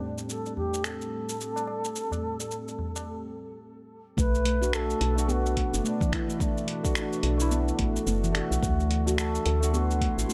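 A lightly reverberant, lo-fi haze opens this earthy, warm organic downtempo piece at 108 BPM with a 16th-note swing, where a distant, bamboo-toned bass bansuri sings an expressive, vibrato-laden melody through tape echo over a worn, slightly out-of-tune tine electric piano with overdrive, phaser, tape echo and sidechain pumping, a nostalgic, warbling sawtooth pad under a filter sweep, gritty finger snaps, hi-hat and shaker from a dusty sampler-style kit, and a high-tuned, ringing tabla that stops at 3.0 seconds ahead of a break at 3.1 seconds, after which a meditative stainless-steel handpan playing arpeggios, a woody, round FM bass pumping up front and a deep, layered electronic kick arrive at 4.2 seconds as the chords move from Am7 to Bm7 and D7.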